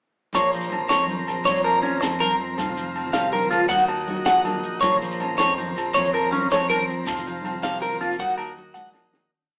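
A bright, twangy electric guitar at the edge of break-up sits up front with a phaser, picking arpeggios in threes over a bittersweet, danceable highlife groove in 12/8 at 107 BPM in Bb minor, moving through Bbmadd9, Fsus4 and Ebm. Beneath it, a buzzy overdriven combo organ with heavy vibrato holds sustained chords, a full-bodied nylon-string guitar rolls fingerpicked arpeggios in the background, and a growly fingered electric bass plays a syncopated figure. Ringing agogo bells carry the time line alongside grainy shekere, vintage-toned congas and a compact cocktail kit with a high-tuned snare and punchy kick, the whole band heard live in a stone room with an AM radio sound, fading out from 7.1 seconds under a drum fill that starts at 8.6 seconds.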